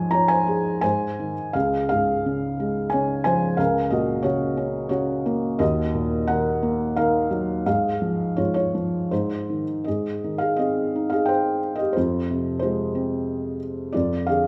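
A felt-muted upright piano plays alone from the start, its dark, intimate tone sitting up front with the thick felt and audible action noise close at hand, set in a moderate scoring-stage reverb. This relaxed, lyrical classical excerpt moves in a rubato 3/4 at roughly 79-94 BPM, spanning Db2 to Bb5. The harmony rests in Db major before shifting to Ab major at 9.9 s, closing on an Fm chord and a rootless Bb/F.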